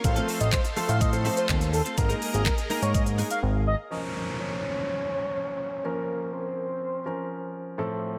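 A big arena sound in a lush hall opens this energetic, bittersweet dance-pop excerpt in Bb minor at 124 BPM, where a drop carries a smooth, expressive synth lead over a clear concert grand piano with audible action noise, a soft supersaw, a twangy, clean electric guitar riff in the background, a fat, saturated analog bass, a pop drum kit with a knocking kick and crisp hats, and a grainy tube shaker, with sidechain pumping on the lead, piano, supersaw and bass. The drop breaks off into a brief silent gap at 3.4 seconds, and a downlifter with slapback echo enters at 3.9 seconds. A dark, round, octave-layered synth lead with vibrato then carries the melody over the piano and the downlifter, and after the lead ends at 7.5 seconds the piano plays on until 8.2 seconds.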